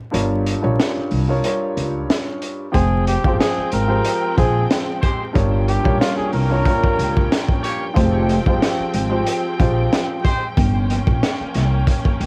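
A tough, gritty boom-bap hip-hop groove in F minor at 92 BPM with a light swing opens on a dark, mellow baby grand piano, a woody pizzicato upright bass and a crunchy, saturated breakbeat kit with a high-tuned snare, whose punchy kick holds off until 2.7 seconds, when a breathy, veiled bucket-muted trumpet takes a jazz-style solo line through analog delay over lush bowed symphonic strings. A clear, vintage horn section adds delayed stabs from 5.0 seconds, and the piano drops out at 10.2 seconds, the whole excerpt carrying a small-room, home-cassette sound with vinyl crackle.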